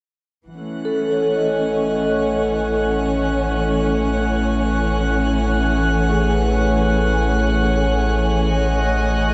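Luminous and peaceful, this ambient excerpt drifts in free time in A major, resting on a single Amaj7 chord under a dark, cathedral-like reverb with a 7.1-second tail. A dark chamber string section holds soft, sul tasto chords with light vibrato from 0.4 seconds over a round, deep analog bass on a low A. A glassy, chorused harmonics texture floats high above them, while a metallic vibraphone with fast motor vibrato plays delayed arpeggios from 0.9 seconds and fades out across the passage.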